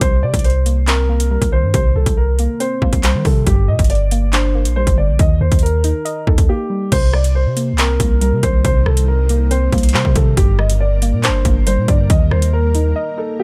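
Drill hip hop at 139 BPM in a half-time feel, cold and menacing: a dark, boxy grand piano carries the melody over a soft, nasal pluck with chorus, both low-pass filtered, while a deep, long-sustained 808-style bass and an overdriven drum kit with hard-clipped kick, metallic hats, handclaps, rim clicks and crash sit up front, the drums muted from 6.5 to 6.9 seconds, and an ethereal, airy pad with tremolo drifts in the background from 8.2 seconds over chords moving from Cm7 to Gm to Eb, in a dry mix cut from a longer piece.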